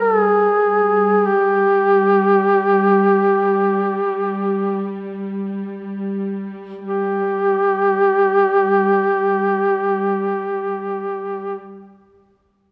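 This short cut from a longer Caucasian folk lament opens at once on a mellow duduk carrying the melody over a bowed string-section drone on G3, both sounding from the start through 11.6 s. The mood is solemn and mournful, in free time, with the pace slowing down over the first 6.8 seconds before a second section begins. Played solo and up front in folk style, the duduk moves between G4 and Ab4, its vibrato and smooth top given a slapback echo. Beneath it, the studio string ensemble sits much lower in the mix, rich and even, with vibrato of its own. Light reverb surrounds the recording, which is tuned to A4 = 441 Hz.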